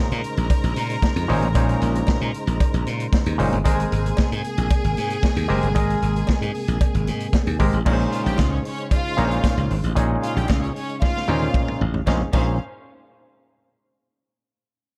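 Disco with a driving, glamorous feel, this excerpt moves in a straight four from a Bbm11 chord to Abadd9 and back again. Up front, a vintage acoustic drum kit with a punchy kick and a warm, rolled-off top plays kick, snare, hi-hat, toms and crash, joined by a bright, growly slap bass. An overdriven auto-wah clav adds stringy, percussive accompaniment through a combo amp. A clear symphonic string section carries a smooth-topped, bowed second line with light vibrato, while in the background a round, dark tonewheel organ holds sustained chords with key click, chorus vibrato and a fast rotary speaker. A close, dry, metallic cowbell enters at 0.5 seconds, a filter sweep arrives at 7.9 seconds, and the drums play a fill from 11.0 seconds, set in a dark studio production.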